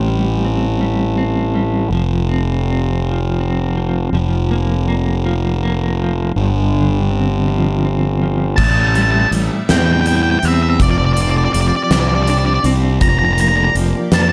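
This fragment of a cinematic post-rock piece opens with a dark, clean electric guitar picking arpeggios through tremolo and slapback echo. Beneath it, an overdriven fingered bass sits up front with a round, fuzzy growl. The two move slowly at 54 BPM in 6/8, in A phrygian, through chords such as Am7, F5, Bb5/F and G7sus4. At 8.6 seconds the music turns cathartic as a huge arena drum kit arrives, its fat snare, punchy kick, hi-hat and crash cymbal ringing in a big room. At the same moment an octave-fuzz lead guitar carries a distorted, forward melody high above with its own slapback echo, while a rich studio string section holds soft-attack, floating chords in the background. Light reverb and a small room ambience frame the whole recording.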